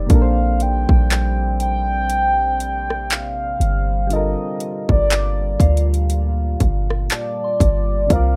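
Sensual and late-night, this contemporary R&B passage has a gentle swing over a Bbmaj9 to Gm9 change, led by a round, horn-like synth melody treated with chorus, phaser, delay and plate reverb. Soft electric-piano-like keys with a warbling vintage tone, a deep, moody ambient pad and a pure FM bell in the background fill out the harmony, while a boomy 808-style bass sits up front. A trap kit enters at 0.1 seconds with a hard-clipped kick, metallic hats, handclaps and rim clicks, all overdriven, in a rough home-demo mix with light reverb.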